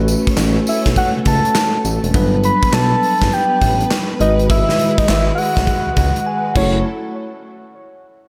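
A bell-like tine electric piano with slapback echo, a lush bowed string section sitting in the background and a smooth, nasal synth bass open this confident, slick new jack swing cut together, with a gated 80s drum kit arriving a moment later. The kit is up front and punchy, its kick, medium-tuned snare, handclaps, hi-hat, tambourine and bright cymbals ringing in a stone room with a gated tail, all carried by a swung 16th-note feel. At 0.7 seconds a soft, octave-layered synth lead takes the melody up front, its round, dark tone thickened by chorus, delay and slapback echo and touched with vibrato. The harmony moves from A69 through Gmaj7 and G#m7 to F#m7, and the electric piano slips in a short fill near the end before the parts drop away around 6.8 seconds. A moderate, lush hall reverb gives the whole mix a big arena sound.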